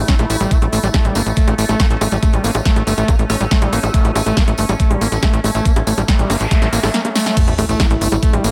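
A straight 4/4 pulse at 140 BPM drives this short psychedelic trance cut, where an up-front knocking kick and a punchy, overdriven big-room kit of snare, crisp hats, crash and bongos, plus a jingly tambourine, sit under a tight, nasal sequencer bass, a screaming, squelchy distorted acid riff with delay and sidechain pumping, and a detuned drone of moving overtones in the background, while a metallic wobble bass surfaces from 1.8 to 3.9 s, zaps, a noise sweep and a drum fill build toward a drop with an impact at 7.4 s, and a warbly, lo-fi tape-like pad arrives at 7.7 s for an alien, psychedelic feel.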